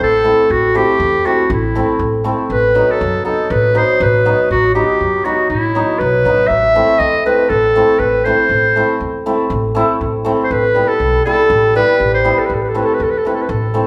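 A straight, even pulse in four carries this bittersweet, soulful klezmer fragment, cut from a longer piece. A clear clarinet sings the melody up front in a classical style, taking the solo role from the very start and holding it to the close at 13.9 seconds. Beside it, a hammered dulcimer enters at 0.2 seconds with shimmering, ringing accompaniment, its acoustic tone sitting close and prominent in the mix. Underneath, a pizzicato upright bass with steel strings gives a woody foundation, lower in level than the other two parts. The harmony rests on A minor, moving through B over A and E minor over A before settling back. The trio sounds like a band playing live in one room, wrapped in a large, wet studio reverb that lends the whole a spacious glow.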